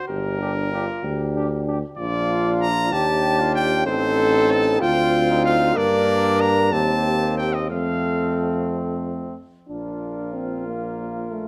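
A clear trumpet carries the melody up front in this triumphant classical brass quintet excerpt in Bb major, moving in a rubato 6/8 at 63 beats per minute with a harmony that passes through G minor and E-flat major seventh before settling on Bb at 9.7 s, where a new section begins. A close-miked French horn with vibrato and a soft attack supplies accompaniment alongside a trombone set in the background, while a distant, roomy tuba anchors the bass from 0.1 s. A warm flugelhorn enters at 0.4 s with a second line, all within a moderate recital hall reverb.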